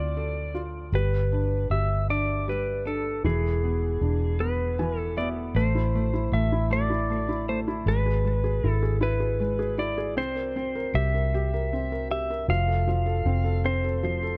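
In a slow, straight 6/8 at 52 BPM counted in dotted quarters, this dramatic, aching pop ballad unfolds as a short cut from a longer piece, settling into A harmonic minor from 5.6 seconds. A clean lap steel guitar carries the melody between G#4 and F5, its compressed, fingered slide tone shaped by volume swells and trailed by delay. Beneath it, a felt-muted upright piano supplies soft, mellow, intimate accompaniment with thin felt, short sustain and audible action noise, and adds a fill from 4.4 to 5.6 seconds. A vintage foam-muted electric bass anchors the low end from E1 to D2, round, amped and punchy. The harmony moves from Dm7, G and E7 into Am, E/G#, C7 and F. All three parts sit up front in a dark, warm studio ambience.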